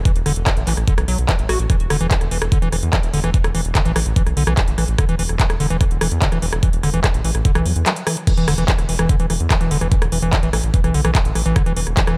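A squelchy, gritty overdriven acid bass riff runs from D3 to F#4 with sidechain pumping and digital delay over a round, deep analog bass and an up-front knocking electronic kick, alongside a drum-and-bass kit of metallic hats, crash cymbal, handclaps and rim clicks in this intense psychedelic trance excerpt at 146 BPM, with a brief break at 7.9 seconds under light reverb.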